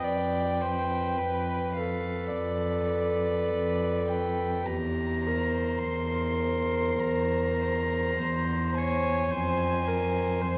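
Solemn and melancholic, this slow, rubato romantic movement for string quartet at 52 BPM features a close, intimate first violin singing the high melody with light vibrato and an airy sul tasto bow, a pure, floating second violin on a narrow inner line, a rich viola accompaniment, and an up-front cello bass, all softly attacked over chords moving from G7/F to C7/E and settling on Fm, within a dark, warm production and the reverberant glow of a recital hall.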